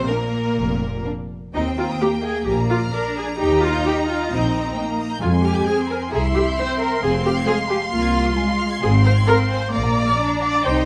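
A quick classical-period movement for string orchestra, this cheerful, graceful passage is cut from a longer piece and unfolds with a rubato feel. A clear, intense violin section carries the melody from the opening, while a second violin section enters at 0.1 seconds to play a second line that reaches high into its register. Beneath them, a rich, smooth viola section sits up front with the accompaniment, and an even, distant-sounding cello section supplies the bass. A double bass section joins at 0.6 seconds, also up front, its bowed tone carrying vibrato and a smooth top. After a brief opening phrase, a new section begins at 1.5 seconds, and the harmony turns toward F minor before settling on Bb, with light reverb and close, detailed microphones keeping the string sound vivid.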